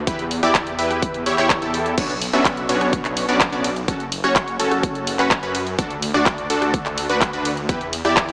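Powerful and anthemic, this cut from a longer festival progressive house track is built on an up-front, punchy supersaw stab riff, detuned and sawtooth-bright with a filter pluck, pumping against the sidechain and trailing dub echo over chords moving Em, Bmadd9, F#m and D. Beneath it sits a thick, lush detuned saw bass with chorus and its own sidechain pumping. A layered, produced big-room kit of crash, ride, hi-hat, handclaps and rim click plays alongside a punchy electronic kick, all set in a moderate stage reverb with a small-speaker character.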